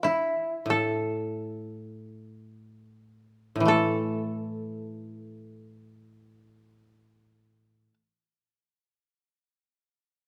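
Close, detailed microphones and a light reverb give this short passage of Japanese traditional chamber music an intimate, clear sound, cut from a longer piece. The mood is calm and austere, moving in free time and tuned to A4 = 440 Hz, with the pace slowing down over the opening 3.7 seconds before a new section begins. Two kotos sit up front, both played with fingerpicks and sounding dry and woody: one carries a second line in the middle register, while the other supplies a low accompaniment that continues to 8.0 seconds. The shamisen states the melody in the same register as the koto carrying the second line, its plectrum-plucked, fretless tone percussive and buzzing, powerful yet placed in the background. The acoustic blend feels warm and restrained, with all three parts sounding together from the first moment.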